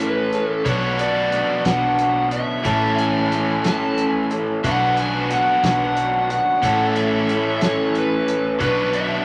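Opening together, a lead guitar through a small cranked amp sings the melody over a shimmering, octave-doubled twelve-string acoustic, a biting, double-tracked overdriven riff guitar sitting up front and a cloth-damped, thuddy drum kit with a fat snare and tight kick, before a dark, round hollow-body bass joins at 0.7 seconds and a very quiet tonewheel organ with key click and slow rotary speaker adds sustained chords from 2.6 seconds, all bathed in a large studio reverb with vinyl crackle in this hopeful, open-road folk and heartland rock excerpt in 6/8.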